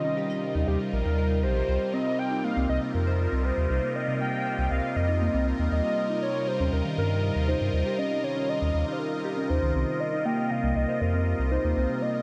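Glitchy and melancholic, this short IDM excerpt in straight 4/4 sets a warbling, nostalgic lead with chorus, tremolo and digital delay over a swirling, detuned pad with phaser, a ringing, harp-like pluck playing arpeggios, and a round sine sub bass that sits up front from 0.6 seconds, all in a light reverb as the chords move between Eb and Cm7.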